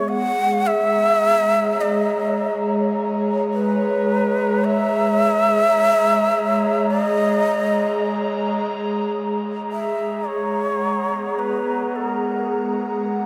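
A close-miked bamboo shakuhachi with vibrato and delay carries the melody over a mellow, detuned pad with chorus and a filter sweep until 9.2 seconds, shifting from a rootless Bmaj7/G# to G#m9 in this serene, spacious ambient piece in G# minor at 53 BPM, all set in a vast cathedral reverb.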